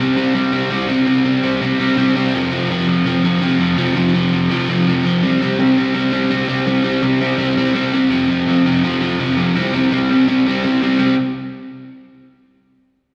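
A bright, scooped overdriven electric guitar plays alone through this energetic, rowdy punk passage. It is picked, double-tracked and up front with a slapback echo, moving between C5 and F5 chords across a range of F2 to C4 at a straight 166 BPM in 4/4. Heard as a live gig through the venue's PA in light recital-hall reverb, this cut from a longer piece shifts to a new section at 11.0 seconds, and the guitar stops at 11.1 seconds.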